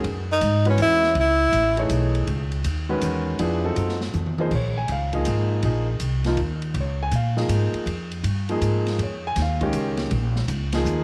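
A cool, searching modal jazz excerpt in a swung 3/4 at 161 BPM opens with grand piano, upright bass and drum kit together, as a breathy tenor saxophone slips in at 0.3 s for a brief, whispered phrase that ends by 1.9 s. The saxophone sits up front and intimate, its soft attack, vibrato and scooped notes giving the line a hushed jazz voice. Beneath it, the pizzicato upright bass is woody and growly with steel-string bite, while the piano supplies close, mellow accompaniment. The drum kit sounds small-room and smooth, with dark cymbals, a medium-tuned snare and a boomy kick, and a short fill at 4.1 s carries the music from F# dorian into Bb dorian at 4.5 s. The harmony moves from F#m9 through F7b9 to Bbm7, all set in a moderate plate reverb.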